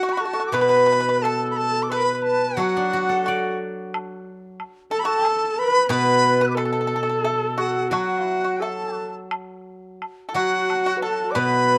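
A buzzing, pure-toned dizi sits up front with vibrato and tongued notes, carrying the melody through this graceful, pastoral Chinese chamber piece in a loose, rubato 4/4. A breathy, reedy low xiao, a dry, percussive pipa and a husky, smooth-topped horsehead fiddle with portamento share the second line; a silvery, ringing steel-string zither enters as accompaniment at 0.5 s, and a close woodblock sounds from 1.2 s to 10.9 s. Moderate spring reverb and a dark, warm production shape this short passage cut from a longer work.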